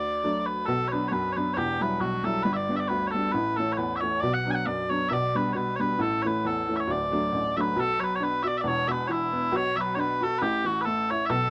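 A close, detailed and nearly dry sound frames this rollicking, bright Celtic polka excerpt at 136 BPM in a lightly swung 2/4, where mellow, sweet small bagpipes carry the continuous vibrato-tinged melody up front over a clear, woody, slightly detuned upright piano accompaniment with short sustain, both playing throughout the 11.5 seconds as the harmony moves through D, Bm, G and A.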